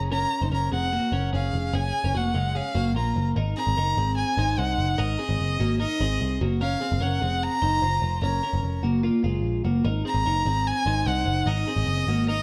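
Dark production with light reverb frames this bright, youthful stretch of jangly indie pop at 148 BPM in Ab mixolydian, where a twangy, compressed twelve-string electric guitar picks clean arpeggios, a round, foam-muted electric bass holds the low end, and a focused, boxy violin with vibrato carries the bowed melody from 0.1 seconds, all three parts sitting up front over chords moving between Gbmaj7 and Ab7.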